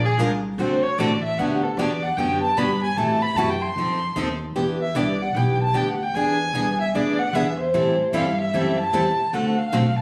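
Recorded on a phone in a small room with a moderate reverb, this charming, swinging excerpt of acoustic string swing in the jazz manouche style features a smooth, vibrato-laden bowed violin soloing up front across the full ten seconds, supported by a woody, thumpy pizzicato upright bass on gut strings. A bright, boxy parlour guitar with fresh strings and audible finger squeak picks the accompaniment up front, while a full-bodied dreadnought guitar sits in the background, heard only briefly at the start and again from 7.7 seconds. The harmony moves through jazz changes such as Gmaj7, F#m7b5, Em7 and Am7 before landing on D7.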